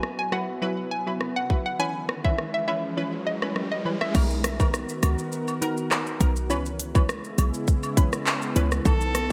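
Dancehall at 102 BPM in a straight 4/4, this brief cut from a longer piece feels tough and hypnotic, set in a lush hall reverb with bright 1980s-style digital production. An electronic island pop drum kit sits up front with a tight kick, smooth hats, crash, handclaps, rim click and shaker under gated reverb, while punchy sawtooth chord stabs with a filter sweep and a thick, detuned unison pad with slow attack carry the Esus2 and C#m7 harmonies, both treated with chorus and sidechain pumping. A hollow, bouncy square-wave pluck carries the melody with chorus and delay until 4.1 seconds, as a background riser builds and the kick drops out from 3.0 to 4.1 seconds. At 4.1 seconds the chords move to Bmaj7 and a short, punchy 808-style sine bass with a noise layer arrives up front, joined by compressed, saturated woodblock and cabasa tucked in the background. In the closing moments, from 8.9 seconds, a nasal, earthy erhu enters on A4 with light vibrato and portamento.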